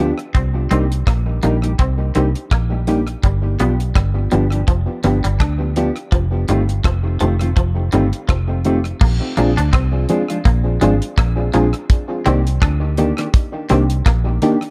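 Bittersweet and longing, this lovers rock reggae excerpt sways at 83 BPM with a gentle 16th-note swing, as a round, foam-muted vintage bass and a damped 70s kit with a tight kick, hi-hat, rim click and crash sit up front, a warbling FM electric piano with tremolo and a mellow, compressed guitar playing stabs both trail tape echo, and a bright, twangy picked guitar riff threads through a dark small-room production over chords moving from Cm7 through G7, F7 and Bb7 to Cm9 at 11.9 seconds.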